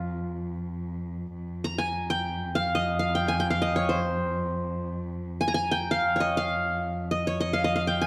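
In free time, this soulful, longing Turkish makam passage in F makam nihavent, cut from a longer piece, features an acoustic qanun playing a bright-edged melody from F4 to Bb5, plucked with fingerpicks on triple strings and placed up front across the full 8.1 seconds. Beneath it, a single bowed cello holds an expressive, nasal, boxy drone on F2 with vibrato and portamento, also up front. Moderate scoring-stage reverb with a 2.0-second decay and a dark, warm production surround the two instruments.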